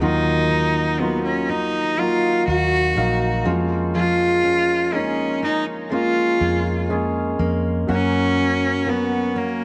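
Melancholic and full of longing, this short fragment of a slow pop ballad in 4/4 unfolds with a straight, unhurried feel. A single bowed cello carries the melody up front, its clear, focused tone close and shaded with vibrato in a low-middle register. Beneath it, a concert grand piano supplies accompaniment with a warm, deep bass, while a fingerpicked steel-string dreadnought guitar sits in the background, spinning full-bodied arpeggios. A vintage muted electric bass, played with the fingers, anchors the low end with a dark, round, punchy amped tone. The harmony moves from Ebmadd9 to Bbm7/F at 3.5 seconds and settles on Gb at 7.9 seconds, all framed by light reverb.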